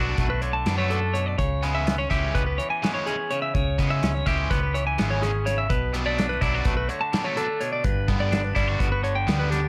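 A dry fragment of intricate, playful math rock and midwest emo in 9/8 at 251 BPM (eighths), where a compressed, up-front clean electric guitar picks high arpeggios over a scooped, twangy electric guitar accompaniment, a biting, double-tracked overdriven guitar riff bathed in spring reverb, a round, dark hollow-body short-scale fingered bass, and a loose, smooth-sounding indie drum kit with punchy kick, medium-tuned snare and hi-hat entering at 0.2 seconds, as the harmony moves through Bm7, C#m7 and Gmaj7.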